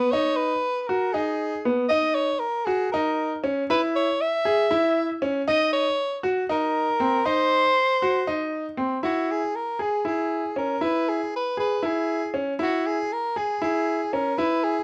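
Progressive instrumental excerpt in 7/8 at 236 BPM counted in eighths, brooding and driving in C# dorian, where a clear, up-front soprano saxophone plays a jazz-style solo melody with vibrato and a soft attack over brilliant, intimate grand piano arpeggios with audible action noise, all set in moderate studio reverb within a dark production that shifts to a new section at 9.0 seconds.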